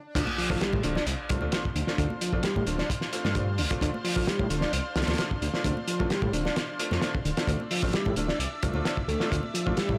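A dry, gritty hardware-recorded breakbeat excerpt with a raw, energetic drive, where a thuddy, cloth-damped kit with a fat snare and dark cymbals sits up front over a rumbling detuned saw bass, a mellow overdriven tonewheel organ riff whirling through a fast rotary speaker with sampler grit and analog delay, clear short piano stabs, a lush chorused pad pumping against the beat on a Dm7, very quiet close congas, and a faint electronic swell and impact marking the drop at 0.2 seconds.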